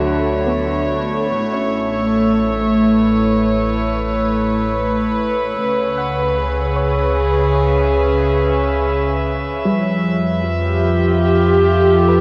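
Ambient excerpt at 58 BPM, melancholic and serene, where an up-front string section holds soft-attack, sul tasto chords over a deep, round analog bass while a dark pluck with subtle chorus and delay traces arpeggios and a glassy, ethereal glass harmonica fades out in the background, moving through Dmaj7, A, C#m7 and Fmaj7 inside a huge reverb and worn, warbling cassette tape drift.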